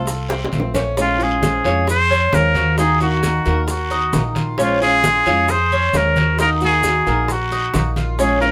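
A close-miked trumpet with a straight mute carries the melody up front, nasal and breathy with an intimate vibrato, in this sultry, nostalgic excerpt of Cuban son and guajira at 133 BPM in Bb minor, moving between Bbm7 and Ebm. Beneath it, a fingerpicked flamenco guitar on old strings and a metallic, double-strung Cuban tres playing arpeggios sit over a thumpy pizzicato upright bass with dark gut strings. Round, saturated bongos enter together with damped, low-tuned congas, a raspy guiro and grainy maracas in the background, a drum fill sounds from 0.3 to 1.0 s, and everything sits in a modest booth ambience.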